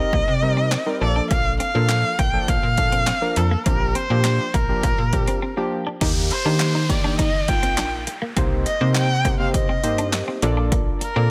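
A straight 4/4 house groove drives this bittersweet, confident dance-pop excerpt, with an up-front electronic drum kit of punchy kick and snare, metallic hi-hats, handclaps and crash cymbal carrying a tape-warm sheen. A snappy, digital FM bass with a slap-like metallic attack pumps against the kick, while round sawtooth analog keys with chorus and a filter sweep pulse underneath, also ducking in time. Over the top, a single bowed erhu sits close and forward, singing an expressive line with vibrato, portamento and a soft attack. A clean, fingered electric guitar riff, compressed and scooped, glimmers in the background through a lush chorus. After a brief break, the harmony shifts at 6.0 seconds and an electronic downlifter sweeps through until 10.7 seconds, all wrapped in a light reverb.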